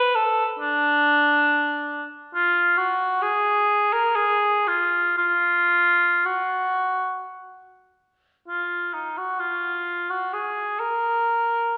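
Rubato in 3/4 at a free 45-70 BPM, this serene, nostalgic classical excerpt features an unaccompanied cor anglais, mellow and vintage with a soft attack, placed up front and singing between D4 and B4 in a lush recital hall reverb before the music shifts to a new section at 8.5 seconds and breaks off at 11.8 seconds.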